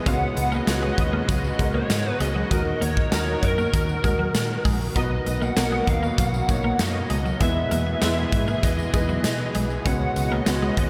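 Uplifting and nostalgic, this 1980s-style pop excerpt moves at 98 BPM in a straight 4/4, cut from a longer piece and soaked in a cathedral reverb that gives the whole mix a dreamy haze. A clear, open concert grand piano with ensemble chorus and a lush, detuned sawtooth pad sit beneath a dark, lo-fi lead guitar through a small cranked amp, its overdriven melody trailed by chorus and diffuse ambient delay, while a very quiet, clean twelve-string electric guitar plays a riff. A round, foam-muted vintage bass and a punchy, up-front big rock drum kit drive the chords from C#7sus4 through D#m, Bmaj7 and Emaj7, with a distant, jingly tambourine glinting far behind.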